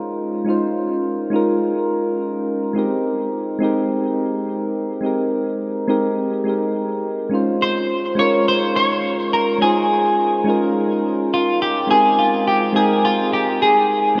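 Chillout at 105 BPM in D-flat Lydian, blissful and smooth, cut from a longer piece and bathed in a dreamy cathedral-sized reverb. Soft, round electric-piano-like synth keys with chorus and delay carry the accompaniment from the start, cycling between Dbmaj9 and Abmaj9 with a mellow, gently decaying tone. At 7.6 seconds a clean, hollow-bodied semi-hollow electric guitar enters up front with the picked melody, its analog chorus and delay adding a shimmering glow through to 14.2 seconds.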